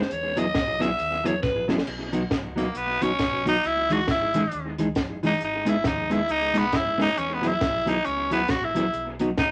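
Bouncy and joyful, this ska excerpt moves at 136 BPM in 4/4 with a swung eighth-note feel in B major. A raspy, edgy alto saxophone opens with a forceful, close-miked solo that lasts only until 1.7 seconds, while a compact cocktail drum kit with dark cymbals, a high-tuned snare and a punchy kick plays throughout, its sound bathed in dub echo and capped by a fill from 1.4 to 1.9 seconds. A deep, round dub bass, fingered and punchy, anchors the low end the whole way, and a mellow, clean electric guitar enters at 0.4 seconds, its tone dark with a warbly pitch drift and its own dub echo. From 2.6 seconds a bright, gritty tenor saxophone takes the lead up front, its light vibrato and smooth top carrying the solo to the end. Chords move through Eadd9, B, C#madd9 and G#m, and the whole mix sits in a wet small room with a bed of vinyl crackle.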